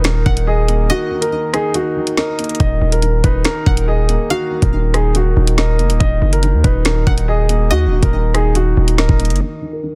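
Over a half-time drill pulse at 141 BPM in Eb minor, a cold, dark hip hop excerpt sets a filtered, mellow grand piano melody and accompaniment against a very quiet French horn section holding sustained chords, a punchy, heavy 808-style bass and an overdriven, gritty drill kit with knocking kick, woody snare and bright hats up front, while a twangy, nasal resonator pluck with chorus and digital delay carries a second line from 0.3 to 8.1 seconds in a small room under a dense, heavily limited master.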